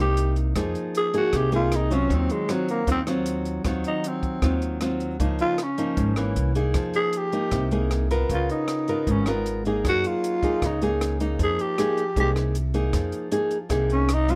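A straight 4/4 bossa nova at 155 BPM in F minor, this intimate, smooth cut from a longer piece features a breathy, growling tenor saxophone soloing up front over fingerpicked nylon-string guitar, woody pizzicato upright bass and a compact cocktail drum kit with a punchy kick, hi-hat and rim click entering at 0.2 seconds, moving through chords such as Fm11, Ebm69, C7b9 and Gb69 in a dark production with light reverb.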